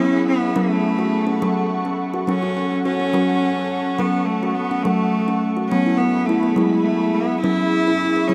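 Hypnotic and meditative, this short world excerpt in a straight 6/8 sets a woody, thumb-plucked kalimba playing arpeggios and a clear, biting bowed cello carrying the melody with light vibrato, both up front and trailed by dub echo, over an ethereal, warbling pad of sustained chords with ensemble chorus, all bathed in a long plate reverb that gives the mix a drifting, echo-heavy glow.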